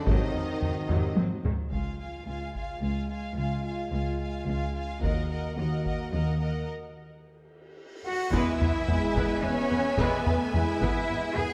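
This dark, dramatic passage from an epic orchestral film score opens at 109 BPM in 3/4, with lush, bowed violins carrying a melody and a second line, mellow French horns and a very quiet, brilliant trombone section holding chords, and intense cellos on the bass. Distant violas, smooth double basses and hard-stick taiko drums in a live room join almost at once. A break arrives at 6.7 seconds, and a huge, dark cymbal swell and sub drop lead into an impact at 8.3 seconds, where the trombones return and a rich string section adds sustained chords in the background, all set in a moderate concert hall reverb.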